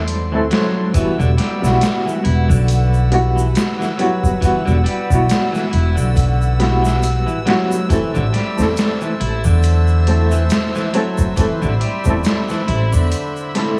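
Brooding, melancholic trip hop cut from a longer piece, built on a woody, dark pizzicato upright bass and a gritty, pitched-down sampler-style drum kit with a thumpy kick and high-tuned snare up front, while a soft felt-muted upright piano with tremolo and tape echo, a reedy bowed string section holding sustained chords, a twangy, slightly broken-up electric guitar picking arpeggios through tape echo and 12-bit sampler grit from 0.3 s, and an egg shaker, triangle and group handclap in the background all sit under vinyl crackle and light studio reverb until the bass stops for a brief break at 13.1 s.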